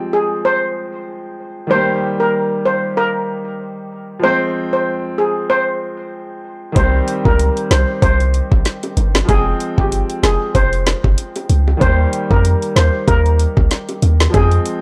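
A clear, naturally sustaining baby grand piano opens this hypnotic, sultry dancehall excerpt in F minor at 95 BPM, with a shimmering steel pan carrying the melody up front almost at once, its airy metallic tone struck with medium rubber sticks. The chords move from Fmadd9 to Eb and back, settling into a loose 16th-note swing. At 6.8 seconds the groove fills out: an electronic island pop drum kit arrives with a knocking kick, woody snare, rim click and metallic hats, while a deep, boomy 808-style bass with a fast attack and dark decay sits prominently alongside it. Tight, high-tuned acoustic bongos with a vintage, band-limited character tap softly in the background. The whole excerpt carries a dry, gritty cassette-tape texture within a small room ambience.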